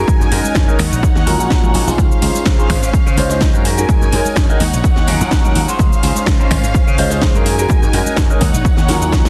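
An up-front, punchy electronic kick with overdrive drives this funky, joyful filtered disco house excerpt alongside an overdriven house kit of cracking snare, metallic hi-hats, cabasa and finger snaps, a bright slap bass, a boxy grand piano through a phaser, intimate bowed strings with vibrato and soft attack, and close, dry tambourine and congas in the background, every part but the kick pumping to the sidechain over Gb69, Ebm7 and Dbmaj7 chords in a dense, dry, heavily limited mix before a drum fill at 8.9 s.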